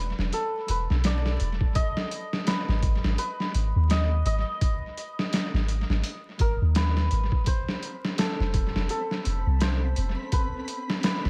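A swung 84 BPM trip hop groove in 4/4 enters at 0.2 seconds on a compressed, pitched-down, muffled sampler-style kit with a thumpy kick, medium-tuned snare and hi-hat, tape echo and a tape-warm, small-room character, sitting up front beside a deep, round 808-style bass. Above them a bright, shimmering santur rings out the melody through dub echo over chords moving from E5 to G#m and then F, setting a hypnotic, dark mood. At 7.9 seconds a flickering, detuned granular texture with its own reverb drifts into the background, and vinyl crackle runs through this echo-heavy fragment of a longer piece.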